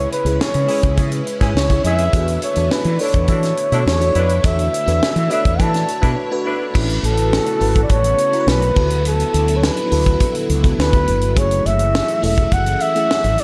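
At 104 BPM in a straight 4/4, a tight funk drum kit with a high-tuned snare and tight kick sits up front beside a round, dark fretless bass, setting a breezy, urban groove for this polished 1980s jazz-funk pop passage in A major, cut from a longer piece. A breathy, close-miked flugelhorn with vibrato carries the melody over a lush, dreamy FM electric piano with a soft pad layer, while a swirling, phased string machine holds sustained chords in the background and a mellow horn section adds an octave-doubled second line from 0.7 to 6.6 seconds. A brief break at 6.2 seconds leads into a second section, where the harmony moves from C#m7 and E7sus4 to A69, D69 and F#m9, all framed by a big arena sound with concert hall reverb.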